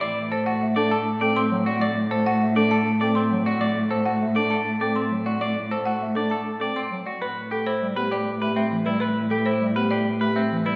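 Heard from further back in a recital hall, the recording carries a lush wash of reverb and a soft, rounded top end. This is a meditative, hypnotic piece of minimalist classical pattern music, cut from a longer work, moving at 100 BPM in a straight 3/4. A folk marimba played with hard mallets carries the melody, its hardwood bars sounding woody, rustic and percussive. A clean, picked electric guitar spins twangy, bright arpeggios up front. Beneath them a single bowed cello holds the bass on A with expressive vibrato and portamento, and a dark bass clarinet joins at 0.6 s as a classical-style accompaniment in the background. The harmony rests on D over A before shifting to A7sus2 at 7.2 s.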